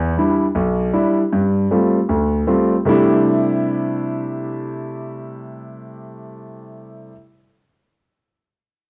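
Swinging and energetic, this short jazz fragment is cut from a longer piece and moves with a lilting swung feel in four. A warm concert grand piano carries the accompaniment from the start to 7.1 seconds, sitting up front with a natural character and a deep bass that reaches low into its register. Its tone carries the grain of cassette tape, and a plate reverb adds a sheen to the instrument. The harmony moves from Em7 to G9sus4 before settling on C69 at 2.9 seconds, where a second section begins. Around it, a small room adds a noticeably wet ambience, giving the whole a homespun, intimate feel.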